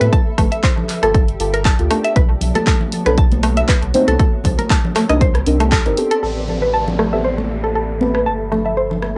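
A woody, mallet-like synth pluck spins arpeggios in A dorian over dark, wave-folded chord stabs moving through Gm9, Bm9 and Cm9, the pluck, stabs and a round sine sub bass all pumping together, joined by a punchy up-front kick and a cassette-worn drum machine of handclaps, hi-hat and rim click, with bright, distant congas joining at 0.4 seconds and a cloudy granular pad drifting in the background. This moody deep house cut runs at 118 BPM with a light swing, its tape-hazed sound set in a small room. A band accent lands at 5.7 seconds, the kick drops out soon after, and a downlifter sinks under an Am9 chord that gives way to Gsus2.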